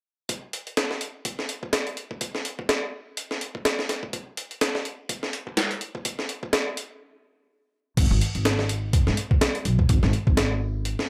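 Gritty and raw, this excerpt of swung breakbeat at 125 BPM in G# minor opens with a compressed, sampler-style drum kit, with a thumpy kick, high-tuned snare, hi-hat and crash re-recorded in a small room, high-pass filtered and placed up front. After a stop from 7.0 to 8.0 seconds, a woody, growly pizzicato upright bass with steel strings and tube saturation enters at 8.0 seconds, ranging from G#1 to G#2. The mix is dry, with little reverb.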